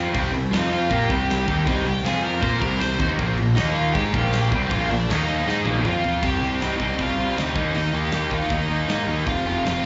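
This excerpt sounds like a live club gig heard through the venue's PA, wrapped in small-room club reverb with its top end capped at 7.8 kHz. It is raw, urgent punk rock at 158 BPM in straight 4/4, in C minor and tuned a touch flat to A4 = 437 Hz. A distorted, double-tracked rhythm guitar sits up front with a compressed riff and slapback echo, cycling through C minor, F, Bb and Eb chords. Beneath it, a fuzz-laden picked bass adds a growly, punchy, overdriven low end, while the big-room acoustic kit brings a medium-tuned snare, tight kick and a rolled-off top. A high-gain lead guitar, also with slapback echo, joins at 0.5 s and carries the melody up to C6. The two guitars and the bass share a bright edge, and a drum fill at 5.5 s pushes the band into a new section at 6.2 s.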